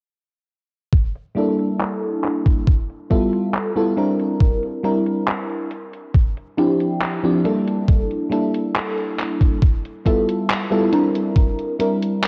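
The recording has a worn, warbling cassette quality, with light reverb and a pitch drift that gives this short cut from a longer piece a hazy, woozy feel. It is a slow vaporwave groove at 69 BPM in 4/4 with a straight feel, set in G dorian. A thumpy, sampler-style electronic kick sits up front from 0.9 seconds, entering together with a detuned 8-bit drum machine playing handclaps and hi-hat, its hats and snare dulled by low-pass filtering, with a filter sweep running across the drums. From 1.3 seconds a mellow FM electric piano carries the harmony between F3 and Bb4, its round, dark tone marked by a faint noise layer, a fast attack that decays, and phaser, subtle chorus and tape echo. The chords move through Gm69, G13, C9 and Dm11 before circling back, and the kick drops out at 11.5 seconds while the piano and drum machine carry on to the end.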